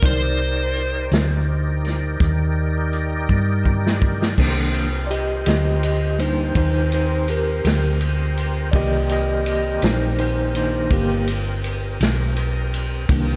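A biting, overdriven lead guitar with slapback echo opens this soulful, brooding slow blues in 12/8 over a Cm7 chord. It is joined from the start by a gritty tine electric piano with medium tremolo, a lightly overdriven tonewheel organ holding sustained chords through chorus vibrato and a slow rotary speaker, a round hollow-body bass and a punchy vintage drum kit with dark cymbals and a rolled-off top. A drum fill begins at 3.3 seconds, the guitar stops at 3.6 seconds, and from 4.4 seconds the barky electric piano takes a solo through a combo amp, while the bass and drums sit up front in a light studio reverb.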